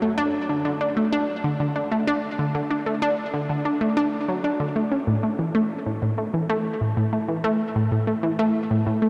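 Ambient excerpt with a cosmic, luminous mood, where a lone analog pluck, round and detuned with a sawtooth edge, a fast attack and a decaying filter sweep, sits up front through chorus and tape echo across a low-to-middle range, bathed in a huge, dark reverb that trails for seconds beyond each note until the clip ends at 9.1 seconds.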